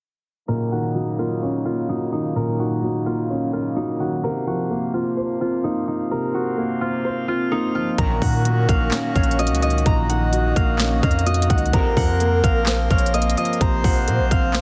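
This menacing, hard-hitting trap excerpt opens with a ringing, fingerpicked concert harp melody carrying tape echo, set over a dark grand piano with deep bass and hollow, reedy accordion chords while a filter sweep runs until 8.0 seconds. At that point the half-time beat arrives: an up-front kit with a hard-clipped kick, sharp snare, crisp hats and handclaps, a long, sine-toned 808-style bass, a velvety, detuned synth second line with chorus and tape echo in the background, and tight, close-miked brass stabs. The small room sound is packed into a dense, heavily limited, low-pass filtered modern master.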